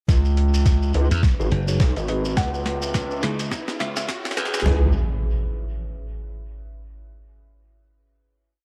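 An echo-heavy, lightly reverberant mix carries this short, gritty, funky glitch hop piece in C# minor at 105 BPM with a swung feel: pitched-down, tape-warm boom bap sampler drums thump out a broken kick and snare beneath closed hi-hat and rim clicks, a grainy shekere with dub echo shakes sixteenths, and an aggressive, saturated synth bass chops phrases that a punchy, glassy slap bass answers. A deep, moody analog pad with chorus and phaser, and bell-like electric piano stabs with 12-bit grit, both pump behind the beat. A woody wave-folded pluck adds short answering phrases from 2.0 s, and a background riser from 1.8 s builds through a filter sweep and drum fill to an impact and final C#m7 chord at 4.7 s.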